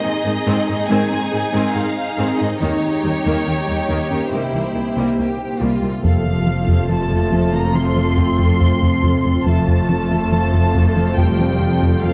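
Vast and brooding, this slow 70 BPM hybrid orchestral and electronic film cue in C phrygian opens with a close, vibrato-rich violin melody over a softer second violin line, lush distant violas, a deep warbling detuned pad with chorus and built-in reverb, a round decaying pluck arpeggio with chorus and delay, and rich cellos on the bass, before French horns, a punchy, funky analog bass riff and woody double basses join at 6.0 seconds as the chords move from Ab through Eb7 and C7 to F, all set in a dark, wet scoring-stage reverb.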